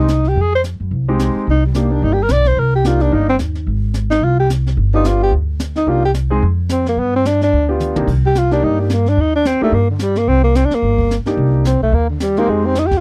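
A breathy tenor saxophone with light vibrato and scooped notes carries the melody up front in this smoky, moody small-group swing and bop jazz in C minor at 218 BPM, backed by a deep-voiced concert grand piano, a woody pizzicato upright bass and a brushed drum kit with dark cymbals that plays a fill at 7.8 seconds, all in a dry, close 1970s-style studio sound.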